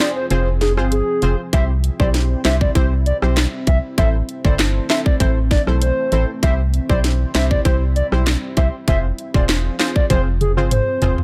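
An organ-like FM bass sits up front in this summery, bouncy dancehall excerpt at 98 BPM in C major, entering at 0.3 seconds with a percussive, dark tone that strikes fast and decays. The electronic island pop drum kit is just as forward, with a tight kick, sharp snare, tape-warmed hats, handclaps, rim clicks and toms, and it closes the passage with a fill from 10.1 seconds. Over this, a woody, soft clarinet-like synth lead carries the melody with vibrato, chorus and tape echo. Punchy, detuned sawtooth brass stabs with a filter pluck and chorus fill in the accompaniment. Beneath them, a deep, moody ambient pad holds sustained chords in the background, with a slow attack, long release, built-in reverb and sidechain pumping. After an opening break, the harmony moves from Fm to C at 1.5 seconds, then through Am and back to C before returning to Fm, all in a digital ambience.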